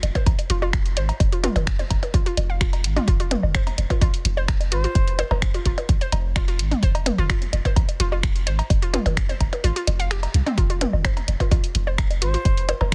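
Minimal techno at 128 BPM in F minor, hypnotic and quirky, built on a punchy, up-front electronic kick (which drops out from 9.6 to 10.6 seconds) and a deep sine sub bass with a pitch-drop attack and sidechain pumping, with house finger snaps and bright hi-hats, delayed electronic woodblock, blips, cowbell and toms, and a hollow, bouncy, detuned square-wave pluck riff with chorus, pumping and delay, while a reedy concert flute with vibrato adds a brief airy delayed note at 4.7 and 12.2 seconds, all in a dry, dense, heavily limited modern mix.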